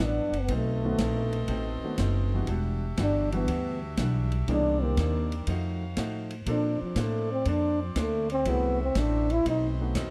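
A swinging 4/4 big-band jazz feel carries this energetic fragment, where a breathy, dark trombone solo with light vibrato floats up front over a woody, growly pizzicato upright bass, edgy sustained saxophone-section chords, a clean hollow-body archtop guitar and a worn baby grand piano tucked in the background, with a big-band drum kit and its punchy kick joining at 0.3 seconds and the piano at 0.8 seconds in a dry, close 1970s-style studio sound.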